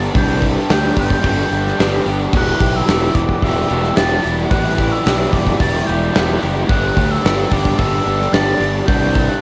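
A punchy, up-front gated 80s drum kit with bright cymbals and a bright stone-room sheen drives this dreamy, hazy shoegaze and dream pop excerpt alongside a fuzz-laden fingered bass that also sits forward in the mix. Over a Gadd9 to Em7 progression, a mellow, hollow jazz flute with vibrato, breathy chiff and tape echo carries the melody. Behind it, an evolving, detuned wavetable pad with phaser and reverb holds sustained chords, two overdriven guitars play riffs (a biting one with lush chorus and a semi-hollow one with reverse reverb), and a very quiet, twangy clean guitar picks arpeggios, all within the small-room ambience of a home cassette recording.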